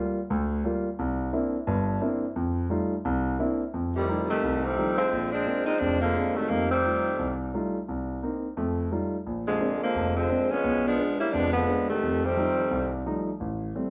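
Swinging eighth notes drive this joyful, energetic jazz excerpt, where an up-front, natural-sounding grand piano comps from the start through changes rich in ninth chords while a tight, mellow saxophone section with vintage vibrato and soft attacks carries the melody in two phrases beginning at 4.0 and 9.5 seconds, all set in a moderate large-studio reverb.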